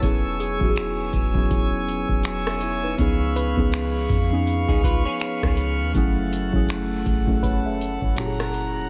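Contemporary R&B in a smooth, dreamy mood, built on muted, felt-like synth keys with chorus up front over a brilliant plenum pipe organ, a round, dark 808-style bass and a booming analog drum machine with snaps, rim clicks and metallic hats, while a crystalline wavetable pluck sits very quietly beneath and a clean semi-hollow guitar with lush chorus and tape echo adds brief background arpeggios from 4.7 to 5.9 seconds, all in light digital ambience.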